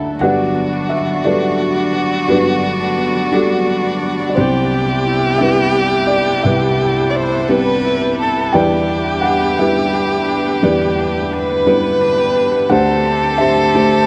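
Acoustic folk-pop ballad in G major, tender and hopeful at a slow 58 BPM in 6/8, cut from a longer piece, where a felt-muted upright piano, dark and boxy with tape echo, opens with a fill at 0.0 seconds and carries the melody up front, a vibrato-rich violin sings a smooth, expressive second line with portamento, a fingerpicked concert harp rings out arpeggios with tape echo in the background, and a close chamber string section holds soft sul tasto chords beneath, all in light reverb over a Gmaj7, Cmaj7, Em7 and D7sus4 progression with lossy compression artefacts.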